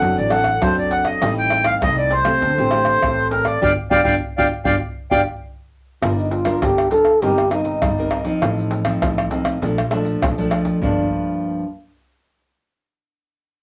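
A reedy, slow-beating accordion carries the yearning, nostalgic melody up front in this samba and choro excerpt until 5.2 seconds, and a forceful, punchy jazz-style trombone with light vibrato and a smooth top takes a solo line from 6.0 seconds. Beneath them, a full-bodied, fingerpicked nylon-string guitar and a woody, thumpy pizzicato upright bass carry the accompaniment in a straight 4/4 feel. A close, dry set of egg shaker, tight surdo, pandeiro and tamborim keeps the groove, the band hits an accent from 3.6 seconds, and moderate studio reverb rounds out the sound.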